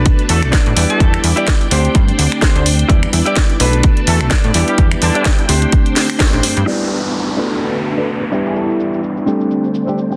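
A dense, heavily limited modern mix with light digital ambience carries this sensual, funky excerpt of filtered disco house at 127 BPM in E minor, swung on the sixteenths and cycling through Bm7, Em7 and D7sus4. An up-front, punchy electronic kick and a house kit of finger snaps, hi-hat, shaker and cracking snare drive the groove, with a barely audible, close egg shaker and group handclap beneath, while a plucky sawtooth analog bass with a fast-attack filter pluck sits up front and pumps against the kick. A bell-like tine electric piano with phaser, a clean direct-recorded guitar riff roughened by vintage 12-bit sampler grit, and a lush string machine sustaining slow-attack chords in the background all breathe with sidechain pumping under a low-pass filter. A brilliant horn section with light vibrato and octave doubling carries the melody through a digital delay from 0.3 s. After a band accent at 6.2 s, the kick and bass drop out and a filter sweep runs from 6.7 s while an electronic downlifter closes the passage.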